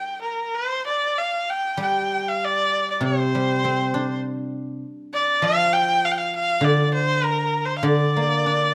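Loosely rubato over a 4/4 frame, this short cut from a longer Chinese traditional chamber piece feels tender and graceful. A single bowed erhu carries the melody from the opening through 8.7 seconds, its nasal, biting tone shaded with light vibrato and portamento. Beneath it, a fingerpicked guzheng supplies ringing, silvery accompaniment, both instruments heard up front through close, detailed microphones and light reverb.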